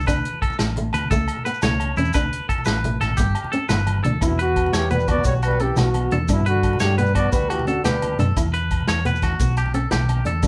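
Recorded live in one room with a moderate studio reverb, this sunny highlife excerpt in 12/8 sets bright, twangy picked electric guitar arpeggios and a fingerpicked flamenco guitar, finger squeaks and all, over a round, dark hollow-body bass, a distant, roomy soul drum kit with a tight kick, soft low-tuned congas, ringing agogo bells and grainy maracas, until at 4.2 s a breathy, whispered trumpet takes the melody with light vibrato while a clear trombone carries a second line in the background.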